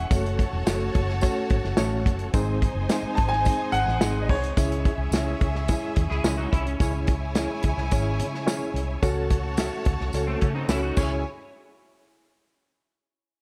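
Punchy, up-front acoustic drums drive this urgent, uptempo 1960s-style soul excerpt in C# harmonic minor at 108 BPM, alongside a round, foam-muted fingered bass, a reedy electric piano with fast tremolo and light overdrive, a shouting tonewheel organ with key click and slow rotary speaker in the background, a lush bowed violin section, a jingly tambourine, a brilliant grand piano carrying the melody with tape echo until 6.5 seconds, and a clean picked electric guitar riff with analog chorus at 6.1 and 10.3 seconds, set in a light reverb.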